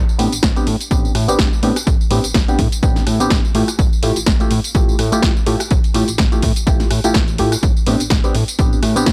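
Sensual and groovy, this short cut of filtered disco house moves at 125 BPM in A minor with a 16th-note swing, as a fat, detuned sawtooth analog bass pumps under a low-pass filter sweep, a punchy overdriven drum machine supplies hi-hat, rim click, snare and tambourine, a reedy, barky electric piano colored by phaser and overdrive pumps through Am11 and Fmaj9/A, and an up-front overdriven electronic kick joins at 0.4 seconds, all in a dry, gritty hardware sound.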